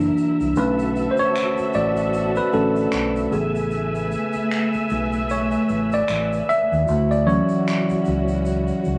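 At 76 BPM in 4/4, with sixteenths swung at 59%, this short neo-soul and R&B excerpt moves at an unhurried, soulful pace with an introspective mood. A worn, slightly out-of-tune tine electric piano takes the lead for the full 9 seconds, sitting up front with a light overdrive that adds grit to its tone. A dark, woody string section holds lush bowed chords with vibrato and a smooth top. Beneath them, a deep fingered electric bass keeps a round, amped low end. An egg shaker and finger snaps sound distant, as if heard across a large room. The harmony drifts from F#7b13 through Bm7 and Amaj9 to Dmaj9, framed by a moderate studio reverb and a layer of vinyl crackle.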